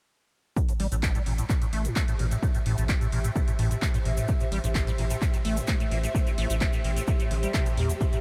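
A straight 4/4 pulse from a punchy, up-front electronic kick and a booming analog drum machine with handclaps and metallic hi-hats drives this gritty, trippy acid house excerpt, with a grainy tube shaker tucked in the background, a deep, round analog bass pumping under the sidechain, a squelchy, resonant liquid acid bass riff swept by its filter and coloured with phaser, tube saturation, chorus and delay, and a blurred, cloudy granular pad that drifts in at 2.2 seconds with its own reverb and pumping, all sitting over a single A minor chord in a light reverb.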